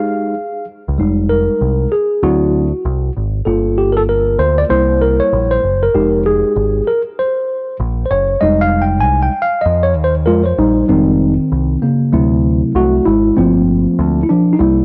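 A worn, slightly out-of-tune tine electric piano opens this cool, smoky hip hop excerpt in F minor at 97 BPM, its mellow, cassette-tinged tone sitting up front on an Fm9 chord with a swung 16th-note feel. A deep, round dub bass, picked and amped, enters at 0.9 s beneath the keys, which carry the lead from 1.0 s through changes from Fm7 to D7, Gm7 and C7. The home cassette recording dulls the highs and adds light reverb, giving the fragment a dusty, intimate character.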